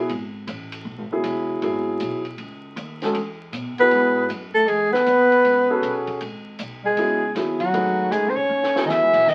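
A breathy, close-miked soprano saxophone takes the melody from 3.8 seconds, joined at the same moment by a mellow bass clarinet with scooped notes as a second line, both singing with vibrato over a C#m9 harmony in this intense, cool modal jazz excerpt at 157 BPM with a swung feel. Before they arrive, an up-front concert grand piano with audible action noise and long sustain sets the accompaniment, supported by a woody, thumpy pizzicato upright bass on gut strings and a dry cocktail drum kit with a high-tuned snare and punchy kick that plays a fill at 8.5 seconds. The whole fragment sits in a moderate studio reverb and carries the crackle of a very old 78 rpm record.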